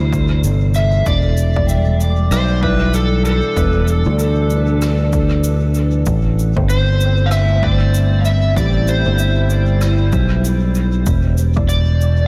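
Deep and hazy, this ambient dub excerpt moves at a relaxed swung pace, with an overdriven slide guitar carrying the melody through lush chorus and diffuse delay over a warbling, nostalgic tape-like pad, a dark, round fingered electric bass sitting up front, a punchy overdriven electronic kick, cabasa and rim click trailing dub echo, a muted, very quiet filtered chord stab entering at 1.6 seconds, and soft-mallet vibraphone arpeggios ringing airily in the background from 1.7 seconds as the chords move between Am7 and E7sus4.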